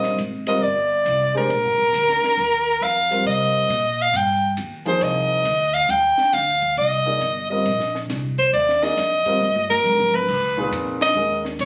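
Captured on a phone in a club, this short excerpt carries moderate room reverb and a sense of club ambience around the band. It is modal jazz at 137 BPM in 4/4 with a swung eighth-note feel, and the mood is spiritual and hypnotic. Up front, a bright soprano saxophone carries the solo melody with vibrato, a soft-attacked subtone and a plate reverb, while a polished grand piano comps with a present, warm tone over Ebmaj9 and then Abmaj9. Underneath, a pizzicato upright bass with steel strings sounds woody and dark, and a compact cocktail drum kit sits in the background with a punchy kick, high-tuned snare and dusky cymbals. A drum fill at 9.4 seconds leads into a new passage on Db9sus4 at 10.3 seconds, and the band hits an accent at 10.9 seconds before the piece is cut off.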